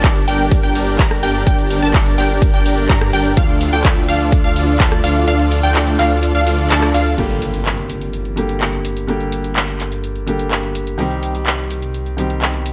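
Festival progressive house at 126 BPM in G minor, euphoric and powerful, this excerpt opens in the middle of a drop where a huge, thick supersaw riff with 12-bit sampler grit and a low-pass filter rides over bright detuned pluck arpeggios, a chorused saw bass, a punchy overdriven kick and a pop kit of metallic hats, handclaps, rim clicks, ride and crash, with the pumping sidechain shaping the synths and bass. The kick drops out at 5.3 seconds and the band hits an accent at 6.7 seconds. At 7.2 seconds the supersaw and pluck stop as an electronic impact sounds in the background and a smooth, vintage grand piano takes over the accompaniment with digital delay, moving from G minor to C minor over the bass and kit in a lightly reverberant space.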